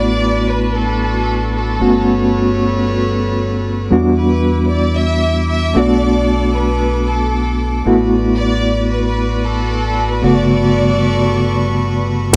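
A dry, gritty recording with a light touch of small-room reverb carries this sensual, sleek nu-disco excerpt at 114 BPM in a straight 4/4, tuned to A4 = 435 Hz. A round, punchy fingered electric bass with an envelope filter sits up front beneath a reedy electric piano, shimmering with fast tremolo and a low-pass filter. Above them, a smooth symphonic violin section carries the melody through an analog delay while an earthy chamber string section holds pumping, filtered chords over a progression that moves from D6/A through Gmaj9#11, Em7 and Bm7.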